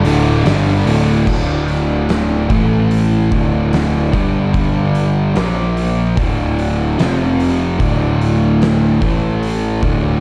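A dark, reverberant large-studio sound frames this sludgy, heavy stoner and doom metal excerpt at 74 BPM in D minor, where an up-front, compressed fuzz guitar and a thick, dark background fuzz guitar grind out riffs over power chords moving from D5 through G5, Bb5 and F5, a bright, double-tracked distorted guitar drops out at 1.3 seconds, a growly overdriven picked bass digs low, and an oversized low-tuned drum kit with a fat snare and punchy kick adds gritty, saturated weight.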